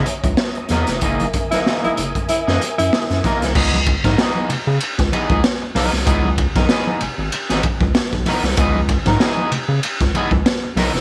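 Light reverb and a studio room sound frame this cool, driving funk cut at 96 BPM in C# dorian, swung on the sixteenths, with a gritty, saturated garage drum kit and its boomy kick up front beside a deep, round analog bass and a dark, scooped electric guitar at the edge of break-up. A mellow, flute-like tonewheel organ with chorus vibrato and a slow rotary speaker holds soft chords in the background until 3.5 s, while damped, bright congas sit behind the band, which hits an accent from 1.0 s as the harmony moves from C#m9 to F#13. A breathy, whispered tenor saxophone with slapback echo enters at 1.5 s on a brief E4 line, and the chords later return to C#m9.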